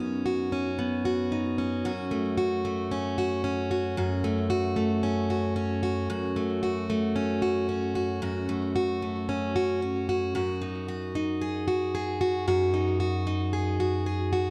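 Folktronica at 113 BPM in F# dorian, this intimate, wistful excerpt features a lone picked, plugged-in steel-string acoustic guitar, tuned to A4 = 438 Hz, playing throughout. Sitting up front with tape echo and audible finger squeak, the guitar moves from Badd9/F# to F#m at 1.9 seconds and then to G#5/F# at 10.3 seconds. A moderate echo chamber reverb and dark, warm production wrap the playing in an auditorium-like space.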